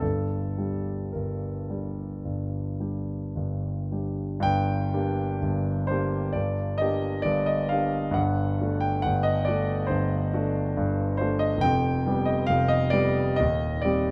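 Mournful and yearning, this brief passage from a romantic classical nocturne is carried by a solo concert grand piano in G minor. The tempo drifts between 53 and 70 BPM in 4/4, with a rubato feel that lets each phrase breathe. The warm piano sits up front, ranging from a deep bass Eb1 up to G5. Around 4.4 seconds a new section opens, and the harmony moves from G minor through D7/G at 8.2 seconds and G7/F before settling on Cm/Eb at 13.4 seconds. A moderate studio reverb gives the instrument a short, gentle halo, keeping the sound intimate and close.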